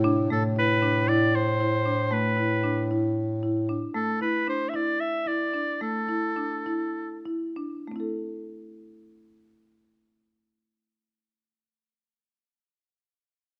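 A straight 7/8 pulse at 190-232 BPM in eighths drives this urgent, restless contemporary chamber piece in A minor, cut from a longer work, with the tempo slowing between 3.9 and 7.9 seconds. A woody, mid-forward marimba with medium mallets plays arpeggios through nearly the whole passage. A warm, soft-attacked bass clarinet supplies a low A bass at the start, and a clear oboe with light vibrato and a smooth top carries the melody until 7.2 seconds. Close, detailed microphones and light reverb keep these classical-style solo voices up front as the harmony moves from Dsus2 to Am.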